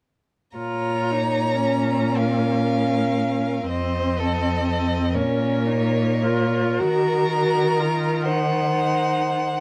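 A focused, smooth-topped first violin carries the melody with vibrato in this short fragment of a slow, elegiac string quartet movement in Bb minor, moving in a rubato 6/8 at roughly 34-43 dotted-quarter beats per minute. Beneath it, a second violin plays an even inner line, a distant viola adds soft-attacked accompaniment with portamento, and an up-front, rich cello anchors the bass with expressive slides. All four are bowed by single players from 0.6 to 9.6 seconds, and the solemn harmony moves from Bb minor through F7 and back before turning to Eb minor, set in light reverb with a dark, warm production.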